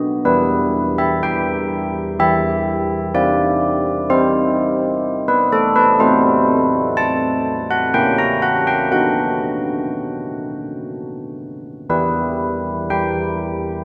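Classical church-bell music in E minor at 62 BPM in a slow 3/4, this wintry, solemn fragment of a longer piece features a solo carillon up front, its mellow bronze tone with a minor-third overtone and the soft touch of a padded clapper ringing through a long cathedral reverb as the harmony moves from Em through C, F#m7b5/A, A#dim and B before returning to Em at 11.9 seconds.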